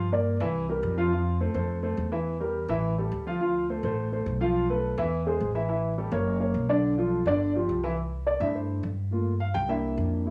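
A home cassette recording with light reverb and a small-room ambience frames this short Afro-Cuban jazz excerpt, cut from a longer piece, with a sunny and sophisticated mood. At a brisk 210 BPM in a straight 4/4 and in A minor, an upright piano with a cassette-tape colour and a woody, long-sustaining tone sits up front, comping through harmony such as Gm, C7, Fmaj7, Edim and Fmaj7#11/B. Underneath, a pizzicato acoustic upright bass on steel strings adds a growly, low foundation and is also placed up front. Both instruments play throughout, and the chords shift quickly through colours like Eaug, F# and Bm7b5. At 8.0 s the piano steps forward into a solo over C6, Gm7 and C7, carrying the passage to its close at 10.3 s.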